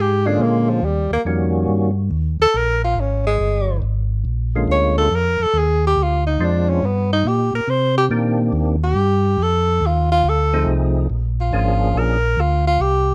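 Soulful and bluesy, this swinging jazz excerpt at 140 BPM in Bb mixolydian features a breathy, subtoned tenor saxophone soloing throughout its 13.1 seconds, its scooped notes and smooth top carried on plate reverb. Beneath it, a mellow, round, dark tonewheel organ holds down the bass with chorus vibrato and a slow rotary speaker. A second, fat and percussive tonewheel organ with key click and third harmonic percussion adds melodic fragments from 0.3 seconds and again from 4.6 to 12.2 seconds, over bluesy changes built on Bb7#9, Eb7#9 and F7#9, all captured with close, detailed microphones in light reverb.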